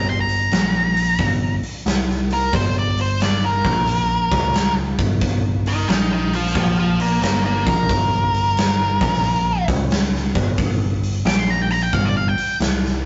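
Blues rock power trio with a southern rock lean, this heavy, smoky fragment of a longer piece sits at 89 BPM in G minor with a swung 4/4 feel. An octave-fuzz lead guitar, dark and distorted, takes a solo up front across the whole passage over moody minor harmony centered on Gm and Bb5. Picked electric bass, direct and amped, holds the low end, while a big acoustic rock kit joins at 0.3 seconds with a punchy kick, medium-tuned snare and hi-hat, all captured in a rough rehearsal-room recording with light reverb, warm saturation and dulled highs.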